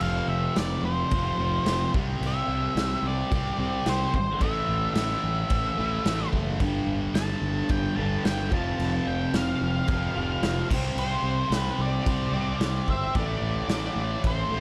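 A thick, double-tracked fuzz guitar riff sits up front from the first second, joined at once by a dark octave-fuzz lead melody, a growling overdriven bass and a raw garage drum kit, in this menacing, gritty fragment of a longer garage rock piece in a straight four. The riff guitar is bright and picked, driving its riff over a progression that moves from F5 through C, A5, G5, F5 and C5 before settling on Am near 13.2 seconds. Above it, the lead guitar's picked fuzz line stays murky and shadowed in a higher register, while the fingered bass comes through direct and amped with a snarling edge. The drums, built from crash cymbal, punchy kick and a medium-tuned snare, sound saturated and pumping in a stone room, with a rolled-off top that keeps their attack rough rather than crisp. Light reverb and a small room ambience frame the whole performance, and the drums drop out at 14.4 seconds just before the other parts stop at 14.6 seconds.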